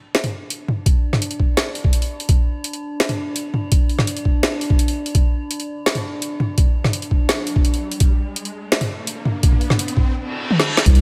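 Light, digital ambience frames this heavy, dark half-time drum and bass build-up cut from a longer piece, where an eerie, metallic FM drone warbles through chorus and phaser beneath an up-front, overdriven electronic kit of woody snare, bright hats and toms and a gritty, pitched-down sampler kick, before a riser from 7.5 s, a reverse cymbal at 10.1 s, a drum fill and a sub drop lead to a thick, saturated sine sub bass at 10.9 s.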